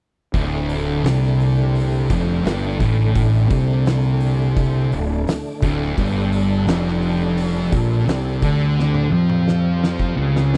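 Stoner and doom metal with an ominous, hypnotic mood, this brief cut from a longer piece sets two picked fuzz guitars on low riffs, one warm and the other darker and up front, over a growly, overdriven fingered electric bass and an oversized low-tuned drum kit with a fat snare and punchy kick. Further back, a full tonewheel organ holds sustained chords through a slow rotary speaker with chorus vibrato, as the harmony moves from D minor to a G power chord at 6.0 seconds. The dry, close 1970s-style studio sound keeps every part near, and a drum fill arrives at 8.8 seconds.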